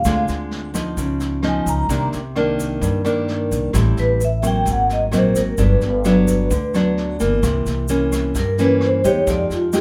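A vibraphone played with medium mallets carries the melody throughout this sunny, romantic bossa nova fragment, its metallic, ringing tone dark and smooth, with a fast motor vibrato. Beneath it, an up-front nylon-string guitar fingerpicks the accompaniment with a full-bodied, classical sound, moving through rich jazz harmony from Dm7b5 and Db9 to Cm9, then Am7, Ab9, Gmaj7 and C7b9 before landing on Fm9. A woody pizzicato upright bass anchors the low end, while a grainy, bright egg shaker sits quietly in the mix. A distant, roomy brush drum kit enters at 0.1 seconds with a medium-tuned snare, rim clicks and a boomy kick, its top end rolled off. The groove moves at a straight 130 BPM in 4/4, and light reverb gives the whole a gentle sense of space in this short cut from a longer piece.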